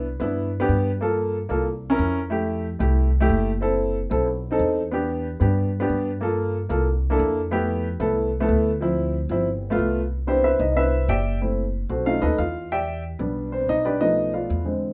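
Sunny and danceable, this short Afro-Cuban jazz cut moves at a lively clip in a straight four-feel. A baby grand piano with a warm, natural tone carries the accompaniment from the start, voicing rich, extended jazz chords that pass through dominant turns and colourful altered harmonies. Beneath it, a woody, pizzicato upright bass with steel strings holds down the low end for the whole passage. Both instruments sit up front in the mix, wrapped in the wet reverb of a club room. At 10.1 seconds the music shifts into a new section, and the piano steps forward to take a solo until the cut ends at 14.9 seconds.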